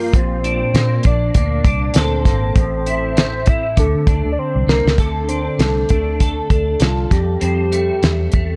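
A loosely swung 16th-note groove from a damped, up-front 70s drum kit with a fat snare, tight kick and a fill at 4.4 seconds drives this lonely, wistful indie and bedroom-pop excerpt, where a dark, foam-muted fingered bass sits beneath a twangy, picked clean electric guitar colored by ensemble chorus and vibrato, while a soft, round octave-layered synth lead with a detuned sub-octave sings the melody through analog chorus and tape echo over chords moving from Bbmaj7 to Fmaj7.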